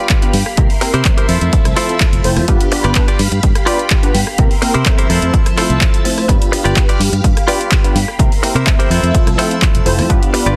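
Lush vintage string-machine chords with phaser and ensemble chorus open this sunny, funky filtered disco house excerpt alongside a bright, twangy clean electric guitar riff, soon joined by a punchy up-front electronic kick, a tape-warm analog drum machine of handclaps, hi-hat and rim click, a detuned sawtooth polysynth comp with filter pluck, and a round, dark fingered electric bass with tube saturation, as sidechain pumping breathes through the strings, guitar, hats, comp and bass over a G7, C7, Fmaj7 progression in a dry, dense, heavily limited mix.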